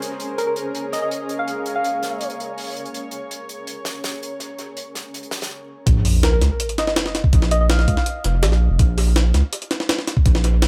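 A deep, saturated sine sub bass drives the drop at 5.9 seconds, joined by a compressed, pitched-up jungle sampler kit with a thumpy kick and high-tuned snare, plus an electronic sub drop in the background. Before that, this raw, dark drum and bass cut at 164 BPM in Bb minor opens on a Bbm7 held by a cloudy, granular pad with vintage 12-bit grit and a small-room acoustic kit of hi-hat and fat snare, both stopping at 5.5 seconds. A round, gentle FM lead with chorus, phaser, vibrato, cassette tape colour and dub echo plays keys-like phrases in both halves, in an echo-heavy mix with light reverb.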